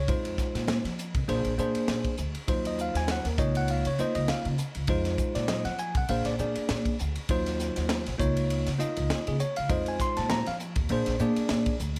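A bell-like, clean tine electric piano sits up front in this intense, funky electric jazz fusion excerpt, cycling through Fm7, Bb9, Ebm69 and Db69 over a woody, plucked upright bass with steel strings, while a crisp, up-front drum kit with a pumping small-room sound, sparkling cymbals, a high-tuned snare and a tight kick drives the lightly swung groove, and high-tuned, thin-skinned congas ring faintly from a distant large room under a light reverb.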